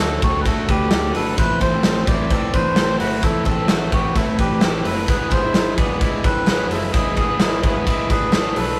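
Bright and breezy jangly indie pop at 130 BPM in a straight 4/4, this short cut from a longer piece sets a reedy, breathy melodica melody over crunchy overdriven guitar with tube saturation and spring reverb, twangy slightly broken-up arpeggios from an electric guitar through a small old amp, a round, foam-muted vintage bass in the background, a punchy, up-front big rock drum kit with hi-hat, kick, snare and ride, and very quiet hollow group handclaps, all captured in a rough rehearsal-room recording with light reverb as the chords move from D to Amadd9 at 1.4 seconds and E7 at 5.1 seconds.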